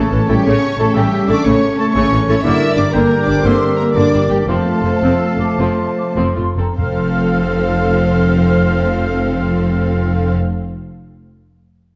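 This heroic, triumphant cinematic passage, cut from a longer piece, moves in 12/8 and opens with violins, violas and cellos together, the double bass section joining at 0.1 seconds. A lush, expressive violin section carries the melody high above, while a second, more intense violin section sings a background line and focused violas fill in the accompaniment. A soft-attacked solo oboe adds a clear second line from the start, and a dark solo clarinet and a pure flute section with rolled-off highs join with their own lines at 0.3 seconds. Beneath them, a very quiet, mellow French horn section and a roomy, distant trombone section hold sustained chords, while even, close cellos and an up-front double bass section with a smooth top anchor the bass. The harmony moves from A through G minor to F, and the music slows between 3.1 and 6.8 seconds before very quiet timpani with medium mallets and calf heads enter at 6.8 seconds to open a new section. 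Scoring stage reverb gives the production a warm, wet sheen.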